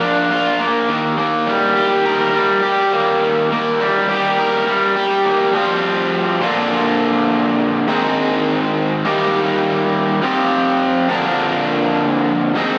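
A raw, bright electric guitar plays alone and up front for the whole 12.8 seconds of this driving, confident rock fragment at 103 BPM, its picked, double-tracked, overdriven lines carrying slapback echo and sitting in a lush hall reverb that gives a big arena sound, as the chords move from Bb and Eb into a second section at 5.5 s that passes through Fsus2, Bb, Ab and Eb.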